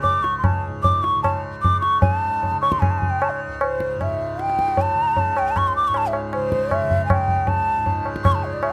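Close, detailed microphones and light reverb frame this short fragment of solemn, introspective Hindustani classical music in seven, where an airy, expressive bamboo bansuri carries the melody up front with vibrato and tongued notes over a bright, buzzing, shimmering tanpura drone and high-tuned, ringing tabla heard close and dry, the pace quickening throughout.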